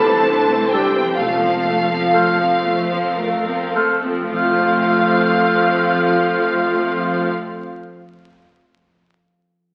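A lush, up-front violin section carries the melody high in its range with smooth, even vibrato, opening this slow, lyrical romantic orchestral passage in a lilting 6/8 that stretches and breathes with rubato, easing back over the first 4.3 seconds. Beneath it, a second violin line sits softly in the background, while rich violas with intense bowing, smooth, even cellos and a very quiet, clear double bass section fill out the harmony and bass, and a warm French horn section holds punchy sustained chords. At 0.7 seconds a mellow, distant silver flute enters high above with crisp attack, joined by a warm oboe and a clear clarinet tucked behind, each adding its own supporting line. Close timpani on medium mallets join at 1.2 seconds as the harmony settles from Cadd9 onto F, while from the very start a bright, ringing harp arpeggiates very quietly, continuing briefly after the orchestra stops. 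The whole fragment, cut from a longer piece, sits in a wet recital-hall reverb and carries the crackle and age of a very old 78 rpm record.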